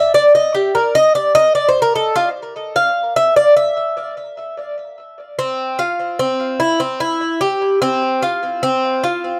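A straight, even 4/4 pulse carries this sunny, relaxed Latin excerpt, played entirely by an acoustic Cuban tres that sits up front in a moderate studio room. Its picked double strings, some doubled at the octave, ring bright and metallic through a touch of tape echo as it moves between its middle and upper register. The tres takes a solo spotlight for the first 5.2 seconds before shifting into a new section that runs to 9.4 seconds.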